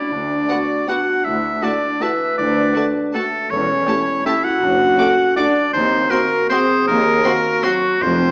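Dark and bittersweet, this short fragment of an orchestral ballroom waltz moves in 3/4 at 159 BPM with uneven, rubato beats. A bright, up-front oboe carries a second line with light vibrato beside a distant, roomy clarinet and mellow, tight French horn chords, over a rich double bass section and a focused cello section. From 0.5 s, a clear, intense violin section sings the melody in the background with a warm second violin section and dark, expressive violas, until hard-mallet timpani strike very quietly at 8.0 s, all in a wet recital-hall reverb with a small-speaker sound.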